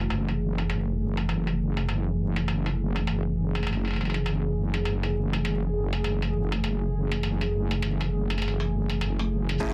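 A dense, heavily limited mix with light reverb and a layer of vinyl crackle frames this gritty, playful glitch hop excerpt, moving at 101 BPM in 4/4 with a 61% swing on the sixteenths in F# minor. A heavy, wobbling bass sits up front on F#1, its detuned sawtooth-and-sine tone saturated, compressed and thickened with chorus. Alongside it, a smooth analog pad holds an F#m7 chord with a soft attack and long release, treated with chorus and sidechain pumping while a filter sweep runs across it from 0.0 to 9.6 seconds. A sampler-style boom bap kit with crash cymbal, hi-hat and shaker sounds pitched down and tape-warm, re-recorded in a small room, with low-pass filtering dulling its hats, cymbals, percussion and room. At 9.6 seconds, a dark, clean, fingered electric guitar arrives up front with stabs under sidechain pumping, joined by a thumpy, pitched-down electronic kick tucked in the background.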